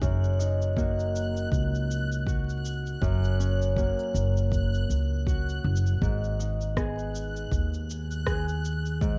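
A woody, up-front pizzicato upright bass anchors this wistful, delicate folktronica piece alongside mellow, ringing fingerpicked Celtic harp arpeggios bathed in digital delay and plate reverb, a deep, tape-warm electronic kick, a quieter electronic shaker and rim click re-recorded in a large room, and a faint, bright, reversed granular texture swelling dreamily high above, the whole set in a lightly swung groove over three chords and wrapped in a dark production with vinyl crackle and light reverb.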